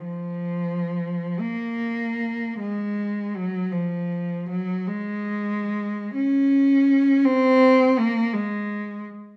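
Nostalgic and serene, this short excerpt from a longer classical work features a single bowed cello playing an expressive, unaccompanied line in a free rubato 6/8, with the dotted-quarter pulse between 41 and 57 BPM and tuning at A4 = 439 Hz. Up front, the cello has a warm, focused tone with vibrato and a smooth top, moving between F3 and Db4 from 0.0 to 9.0 s. A moderate stone-room reverb gives it a calm, lingering space.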